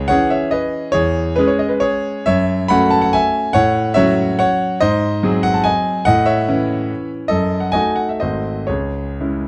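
A clear concert grand piano plays alone and sits up front, its deep bass and smooth, vintage tone carrying this 9.5-second excerpt of a romantic classical dance in triple time. The music is in C# minor and 3/4, with dotted rhythms and a rubato feel that lets the tempo drift between 114 and 153 BPM, giving it a capricious yet wistful character. The harmony moves from C#m through F#m7 and G#7 to A, then passes through D#dim/F# and G#7b9 before settling back on C#m at 8.7 seconds. The piano spans G#1 to B5. A moderate large-studio reverb with a 1.2-second decay surrounds it, and the overall production is dark.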